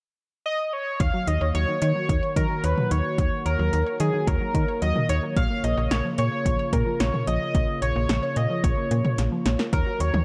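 A dark, lightly reverberant synth-pop excerpt in Eb minor, moving at 110 BPM in a straight 4/4 with a melancholic, cool mood. An octave-doubled sawtooth lead, bold and retro with vibrato, chorus and slapback echo, carries the melody up front from 0.5 seconds, ranging from Ab4 to F5. At 1.0 seconds a deep house drum kit arrives, overdriven and layered with a deep kick, punchy snare, metallic hats and toms, alongside a snappy FM bass with a digital, metallic attack. Also entering at 1.0 seconds is a round, detuned analog pluck playing arpeggios in the background with chorus and slapback echo, and from 1.3 seconds a shimmering pulse-width pad holds sustained chords behind it. The harmony moves from Ebm7 to Bbm at 5.4 seconds, and a drum fill leads back to Ebm7 near the end.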